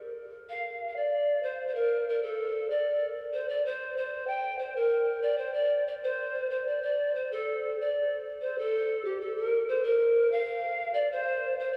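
Festive yet melancholic, this short Andean folk passage in a straight 2/4 features a solo reedy pan flute with an airy bamboo tone, gentle chiff and vibrato, playing from 0.5 to 11.8 seconds and ringing through the long reverb of a vast, cathedral-like space.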